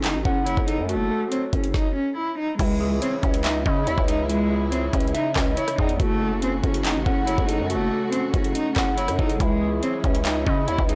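A bowed cello carries the melody up front with expressive vibrato, portamento and a soft, shadowy attack, its line trailed by delay over a tense, cold drill beat in C# minor at 141 BPM with a half-time feel. Beneath it, a clean, fingered electric guitar shimmers through lush chorus, a growling, buzzy 808-style bass punches and decays, and an electronic kit of knocking kick, woody snare, metallic hats, rim clicks, handclaps and crash cymbal sits up front. At 2.6 s a distant symphonic string section enters with sustained chords as the harmony moves between F#m and C#madd9, and the whole track sounds blown-out and overdriven in a digital ambience, cut from a longer piece.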